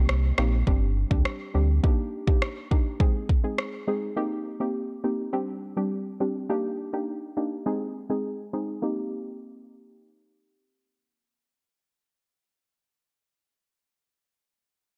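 This dancehall excerpt from a longer piece has a hypnotic, bouncy mood in a straight four-beat feel, with a dark production and little reverb. A soft, round synth pluck carries the accompaniment throughout, its detuned, wave-folded tone blending triangle, sine and sawtooth colours, thickened with chorus and shaded by a low-pass filter that sweeps across the opening stretch. Underneath, a deep sine sub bass doubled at the octave sits up front with a full, sustained body, but it drops out at 1.8 seconds. An electronic afro-pop kit of deep kick and rim click pushes forward from the start and stops at 3.7 seconds, leaving the gentle pluck alone until the end at 12.6 seconds. The harmony cycles through Cm7, Gsus4, Ebmaj7 and Ab before returning to Cm7.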